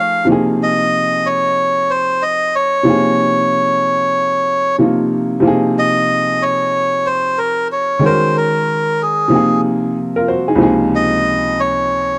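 A dark, warm production with light small-room reverb frames this mellow, smoky hip hop excerpt in Bb minor, moving at 93 BPM in 4/4 with a swung sixteenth-note feel. A reedy, breathy melodica carries the melody up front across the full 12.2 seconds, while a warm upright piano with a woody, vintage tone and short sustain plays the accompaniment alongside it. The harmony rests on Bbm9 before passing through Ebm7, Ab69 and Dbmaj9 in the closing seconds.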